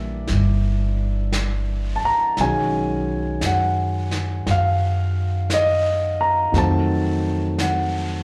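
A jazz ballad at a slow 57 BPM in 4/4, swung on the eighth notes, with a wistful, intimate mood in this short excerpt cut from a longer piece. A concert grand piano carries the accompaniment up front, its tone intimate with deep bass, long sustain and audible action noise, touched by a slapback echo as it moves through a rootless C9, then B69 at 2.4 seconds and F7b9 at 6.5 seconds. A pizzicato upright bass on gut strings sits close beside it, woody, dark and thumpy in its low register. A vintage brush drum kit enters at 0.3 seconds further back in the balance, with brushed snare, medium-tuned snare drum and hi-hat in an acoustic studio-room sound with a rolled-off top and its own slapback echo. The whole is heard as a live gig through the venue's PA, wrapped in a moderate club reverb.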